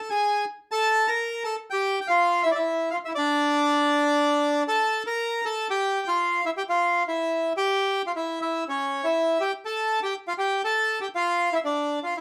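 Tango, dramatic and sultry, played with a rubato feel by a solo bandoneon that sits up front for the full 12.2 seconds of this excerpt cut from a longer piece. The instrument's reedy, bright and airy voice ranges from C#4 to Bb5, moving through harmonies such as Gm13, C#dim and Emadd11 before settling on Dm. A light reverb gives the room a touch of space across two passes of the same section.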